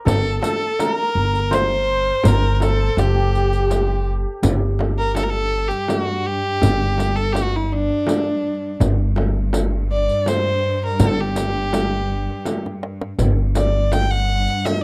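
A rich, nasal solo violin sings the soulful, longing melody up front with vibrato and a slapback echo, over a woody pizzicato upright bass, a mellowly ringing santur that stops at 7.0 seconds, a biting cello section drone entering at 4.5 seconds, and frame drum, riq and soft-handed tombak in 3/4, with a drum fill at 12.5 seconds in this dry, close 1970s-style Persian modal ensemble recording cut from a longer piece.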